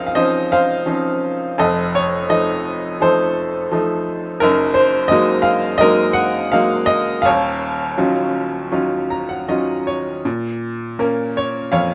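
Rubato phrasing with uneven beats carries this short, sunny classical fragment of lyrical solo piano, where a bright, woody upright sits up front and intimate with audible action noise, moves through chords from Dbmaj9 to Ebm9, adds a fill from 8.7 to 10.2 seconds, and settles on Bbm in a moderate studio reverb.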